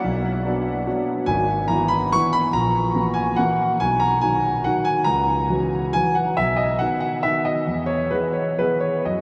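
A concert grand piano plays a graceful, playful classical waltz in B major, moving in 3/4 at roughly 121-150 BPM with a free, rubato feel, its deep bass, open tone and long sustain placed up front. The harmony shifts from B minor through E and F-sharp seventh chords before settling on B and then E. The short passage, cut from a longer piece, sits in a vast, echoing space whose huge ambient reverb lets each chord linger.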